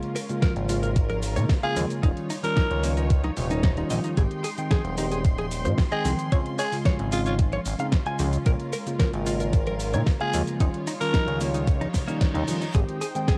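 Sunny and feel-good, this nu-disco excerpt rides an overdriven, thumpy electronic kick up front and a glossy, nasal chorused synth bass beneath a pop kit with a fat snare and metallic hats, distant congas and tube shaker, tine electric piano with tape echo, smooth bowed strings, and a clean, compressed guitar riff with lush chorus, while a raspy, gritty tenor saxophone carries the melody from 1.6 to 11.4 seconds before a reverse cymbal at 11.9 seconds, all colored by the hazy grain of a home cassette recording.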